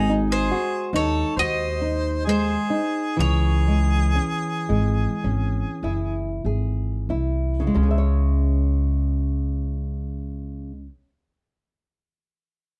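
In a free, rubato 4/4 that slows over its first 7.8 seconds, moving between 44 and 72 BPM, this fado-style ballad in C# harmonic minor carries a passionate, longing mood as a fragment of a longer piece. A bright bowl-back mandolin, picked on its doubled strings, sings the melody while a harmonica with a jazz-style vibrato adds a second line that sounds distant and roomy. The two drop away together at 6.4 seconds, leaving the nylon-string guitar and upright bass. The guitar sits up front, full-bodied and classical in its fingerpicked accompaniment, with the occasional finger squeak. The pizzicato upright bass, woody and dark on steel strings, is also close and is the most prominent part, and the harmony moves from G#7 to C#m at 3.2 seconds. Close, detailed microphones and a light reverb give the acoustic instruments an intimate presence.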